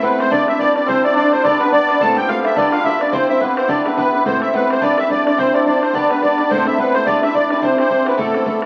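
Driving along at 214 BPM in 4/4 with a lilting swing on the eighth notes, this cheerful, bright Celtic reel is cut from a longer piece and runs just under 9 seconds. A reedy musette accordion carries the melody up front, its close-miked, dry and full sound shimmering with the characteristic musette tuning. Beneath it, a hammered dulcimer plays a second line, also up front, with a ringing, hammered tone. A fingerpicked steel-string acoustic guitar supplies a warm accompaniment with audible finger squeak, cycling through G/B, C and Am. A damped, tight bodhran sits in the background in a live room, and the whole recording has moderate large-studio reverb and the crackle of a very old 78 rpm record.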